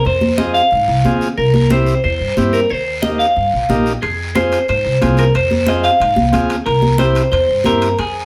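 A bright, twangy clean electric guitar carries the melody up front from the very start, colored by spring reverb, slapback echo and plate reverb, while a raspy guiro scrapes quietly beneath it. This is a danceable, passionate cumbia in F minor at 182 BPM in a straight 4/4, cut from a longer piece and built on a cycle of Fm, C7 and Eb chords. A woody, growly pizzicato upright bass sits up front with a thumpy steel-string tone, joined by high-tuned congas struck with hard hands, close and dry with a thick-skinned body. An overdriven vintage combo organ fills in the harmony with a buzzy accompaniment. At 4.0 seconds, ringing metal-shell timbales enter in the background. The whole band is heard from further back in a reverberant studio room, giving the groove a lively, roomy sound.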